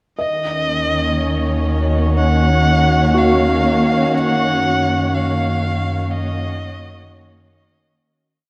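A slow, straight 4/4 pulse at 61 BPM carries this brief, spacious and serene ambient piece in Eb minor, moving from Ebm7 to Gb6 as a fade-out begins at 4.1 seconds and the whole mix drifts in a lush hall reverb. Up front, a rich electric violin with vibrato and portamento sings a motif-based melody through delay, while a muted chamber string section bows veiled, con sordino chords beneath it. A felt-muted upright piano scatters intimate, mellow arpeggios with audible action noise in the background until 4.6 seconds, and a round analog bass holds deep, sustained roots.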